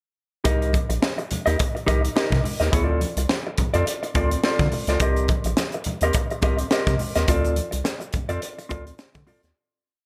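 A swung sixteenth-note funk groove at 105 BPM in C dorian sets a sly mood, built on a crisp fusion drum kit with a high-tuned snare and punchy kick, a rubbery, nasal square-wave bass riff with muted ghost notes and chromatic approach notes, a mellow, clean electric guitar playing compressed sixteenth-note rhythm with muted scratches, ringing low-tuned congas in the background, and a grainy tube shaker joining at 5.0 seconds, all in a small room with light reverb before a fade-out from 7.3 seconds.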